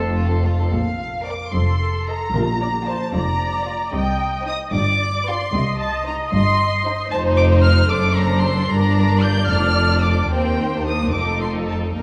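Spirited and lively, this quick classical-period orchestral movement in Bb major moves in a rubato 6/8 at 75 BPM (dotted quarters), its chords travelling from F and Bb through Cm and G7 to Gm before closing on F7. Muted, con sordino strings carry it throughout: an up-front violin melody floats high over a second violin line and viola accompaniment, while distant cellos and the double basses hold the bass, all with a veiled, dark vibrato tone. A brief timpani stroke on Bb2 between 2.3 and 3.1 seconds adds a live-room accent, and a moderate concert-hall reverb wraps the whole passage, which is cut from a longer piece.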